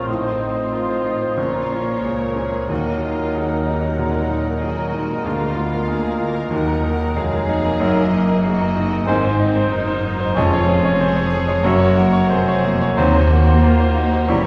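Classical romantic movement for piano and orchestra, tragic and passionate in a flexible rubato, in which an intimate baby grand piano carries the melody up front with long sustain and audible action noise, joined by a veiled, con sordino symphonic violin section in the background. Around it, a clear clarinet, a mellow cor anglais, an airy, hollow large flute ensemble and a muted studio violin section weave second lines, while lush muted violas and a punchy, roomy bassoon accompany over dark, soft-attack cellos and double basses, with a very quiet, tight French horn section holding sustained chords from 0.1 s. Round, soft-mallet timpani on calf heads sound briefly at 1.4 s and 10.4 s, and the whole passage sits further back in a wet recital hall, cut from a longer piece.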